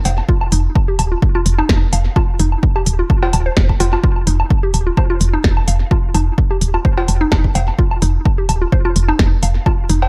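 This dry clip of minimal techno, cut from a longer piece, has little reverb and leans heavily on tape echo. It moves at 128 BPM in 4/4 with a light 54% swing on the 16ths, tuned slightly low to A4 = 436 Hz, and rests on an F5 chord across its roughly 10 seconds, giving it a quirky, cool mood. A punchy, up-front electronic kick enters at 0.3 s beside a woody, dark FM bass that sits low between Eb1 and F1 and pumps under sidechain compression. Above them, a mallet-like FM synth pluck plays a nasal, full-bodied riff between Eb4 and F5, coloured by chorus, tape echo, sidechain pumping and a noise layer. A minimal click kit adds clicky hi-hats and a tiny snare, while a tape-warm cowbell and woodblock, re-recorded in a small room, sit quietly in the background with their own echoes.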